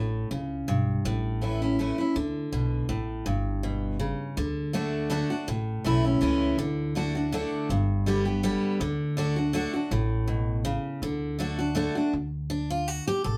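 Bluegrass in a lilting, swung waltz time, this rustic and joyful excerpt pairs a bright, full-bodied picked dreadnought guitar, placed up front, with a woody pizzicato upright bass, both playing throughout in a moderate room reverb that captures the band live together. The guitar picks through a plain cycle of G, D and A chords before stepping out for a short solo from 12.1 seconds as the fragment cuts off.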